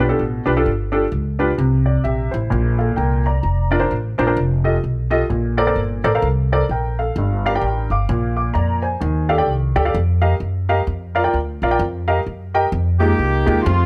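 Jubilant yet reverent, this uptempo gospel excerpt in Bb major swings at 129 BPM in 4/4, with a worn, slightly detuned upright piano and a dark, woody pizzicato upright bass up front from 0.0 seconds, moving through rich jazz-tinged chords such as Bbmaj9#11 and F9sus4. At 13.0 seconds, shortly after the harmony shifts to Fm11, a horn section enters with the melody, its smooth top and light vibrato giving a jazz-style ensemble sound. Light reverb surrounds the parts, and the piano drops out at 13.6 seconds just before the cut.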